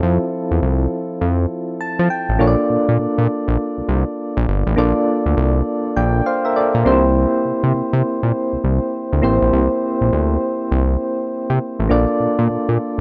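New jack swing R&B with a bouncy, slick mood, this short excerpt from a longer piece moves at 101 BPM in 4/4 with a 16th-note swing that gives it a relaxed strut. A soft, electric-piano-like synth carries the accompaniment throughout, its round, mellow tone touched by chorus and tremolo and a filter sweep, with notes that strike quickly and then decay. Beneath it, a fat analog bass plays up front, its detuned sawtooth sound thick and sustained, evolving under a filter sweep of its own. The harmony opens on Fmaj7, shifts to Bbmaj7 at 2.4 seconds as the second section begins, then passes through C7 before returning to Bbmaj7. Just before that change, the keys add a brief fill from 1.5 to 2.4 seconds, and a light reverb gives the pair a polished, close sound.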